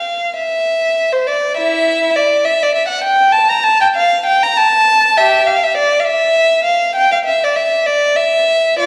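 A lone bowed violin, dark-toned and up front with vibrato, soft attacks and expressive portamento, plays a grave yet flowing baroque-style suite movement in 12/8 at 66 BPM (dotted quarters) with free rubato, ranging from E4 to Bb5 in a tuning of A4 = 437 Hz, surrounded by a wet recital hall reverb heard from further back in the room and a layer of vinyl crackle across this 8.9-second fragment of a longer piece.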